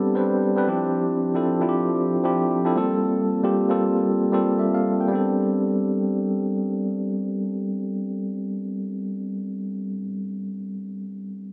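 This amapiano fragment, cut from a longer piece, moves at 115 BPM in 4/4 with a 58% swing on the sixteenths, giving it a hypnotic, deep mood. A tine electric piano carries the whole passage alone, from the start to 11.5 seconds, playing between F3 and G5. Its tone is warm and clean, heard as if through built-in speakers, and it sits up front in the mix with a digital delay trailing its notes. A lush hall reverb with a 2.5-second tail surrounds the piano. The harmony turns through Am11, Dm11 and Gm11 before returning to Am11 as a new section begins at 5.1 seconds.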